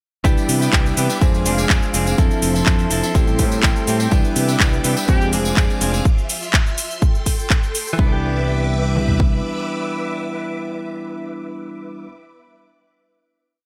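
A punchy four-on-the-floor kick with toms drives this sunny, feel-good filtered disco house piece at 124 BPM in C major, joined by metallic hats, cabasa and claps, a background tambourine, and a fingered electric bass jumping octaves, with the hats, percussion and bass pumping against the sidechain. Over a Cmaj9, Fm6 and Am7 progression, a bell-like tine electric piano with phaser pushes held chords, a lush sawtooth string machine with phaser and ensemble chorus sustains, and a clean, compressed guitar with spring reverb strums sixteenths, while a brilliant horn section adds a brief gritty phrase with dub echo at 5.1 s. The drums drop out by 9.3 s, leaving the keys, strings and guitar to ring out on a final Cmaj9 chord until about 12 seconds, in a dry, close sound.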